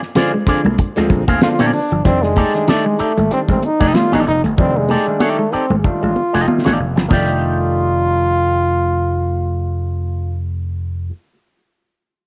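Playful and gritty, this home-recorded funk excerpt on cassette has a swung sixteenth-note feel, built on a damped 70s drum kit with a fat snare and tight kick, a punchy, amped vintage slap bass, and high-tuned congas with soft hands set in the background. A twangy electric guitar through an envelope filter and a compressed clean electric guitar riff sit alongside phaser-treated, overdriven clav stabs that carry tape echo. A clear trombone with light vibrato takes the jazz-style solo up front from 1.4 seconds, and a drum fill runs from 4.6 to 7.1 seconds before the drums and congas drop out, all inside a small, lightly reverberant room.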